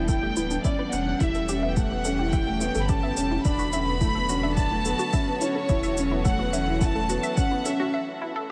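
Cinematic and intimate, this short piano and strings electronica excerpt builds over a straight 4/4 pulse as a floating, up-front violin section carries the melody through delay and a low-pass filter, while a distant, vibrato-rich string quartet holds sustained chords that pump with the sidechain. A dark, mellow grand piano plays a riff with delay, a round sine sub bass anchors the low end, and a bright, detuned analog pluck runs arpeggios in the background under a filter sweep, chorus and cassette-tape colouring. A deep, tape-warm electronic kick and a small-room shaker drive the build-up under a huge ambient reverb until a brief break at 7.9 seconds, where the chords drop out.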